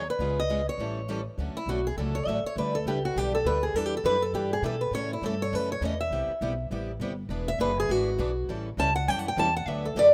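A warm, up-front picked steel-string parlour guitar leads this lively, playful stretch of acoustic jazz manouche swing, taking a solo from 1.4 seconds over chords such as Dmaj7, Em7 and E7, while a boxy swing-style guitar with fresh strings sits in the background, a bright concert steel-string guitar adds accompaniment from 0.2 seconds, and a woody, thumpy pizzicato upright bass on gut strings anchors the bottom, all in a small room with the rough feel of a home demo.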